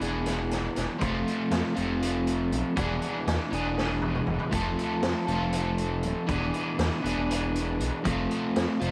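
A straight 7/8 pulse at 239 BPM, counted in eighths, drives this mysterious, trippy psychedelic rock fragment in E phrygian dominant, cut from a longer piece. An overdriven electric guitar carries the riff up front, warm, picked, double-tracked and compressed, with a harmonic tremolo coloring its tone as the harmony alternates between E7 and F. Beneath it, a smooth synth bass blends sawtooth and triangle waves with ring modulation, a fast attack, sustained notes and vibrato. A raw garage drum kit of hi-hat, kick, snare and toms sounds acoustic, gritty and saturated, like a small room, with a punchy kick, a medium-tuned snare, a mid-forward character and a rolled-off top, and it breaks into a fill from 3.8 to 4.5 seconds. The recording sits in a moderate echo chamber reverb with a 2.1-second decay.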